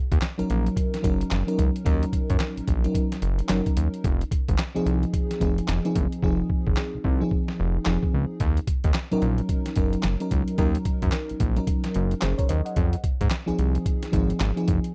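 A swung sixteenth-note groove at 110 BPM in 4/4 drives this slick, confident new jack swing cut, taken from a longer R&B piece in Eb dorian. The sampler-style drum kit sits up front with a thumpy kick, a medium-tuned snare, handclaps and hi-hat, its gritty, pitched-down sound compressed and tape-warm; the hi-hats drop out between 6.2 and 8.4 seconds. Underneath, a fat analog bass with a detuned, saturated sawtooth tone moves between F1 and Ab2, sustaining its notes while a filter sweep keeps it evolving. An FM electric piano layered with a soft pad enters at 0.4 seconds, lush and dreamy yet dark, with a noise layer and triangle tone colored by chorus and tremolo. The harmony alternates between Ebm7 and Fm7, and the dry, close mix has the feel of a 1970s studio with little reverb.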